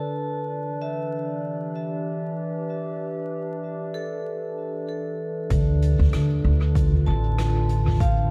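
A warbling, nostalgic tape-like pad holds sustained chords up front through this hazy, meditative ambient dub excerpt, shifting from Dm6 to Em7, while a bright, metallic vibraphone struck with hard mallets rings out arpeggios under a filter sweep and delay. At 5.5 s a woody, thumpy pizzicato upright bass with gut strings enters alongside a punchy, overdriven electronic kick and a natural-sounding soft-mallet kit of hi-hat, rim click and toms, whose hits trail off in dub echo. Light studio reverb and a bed of vinyl crackle give the whole excerpt a hazy sheen.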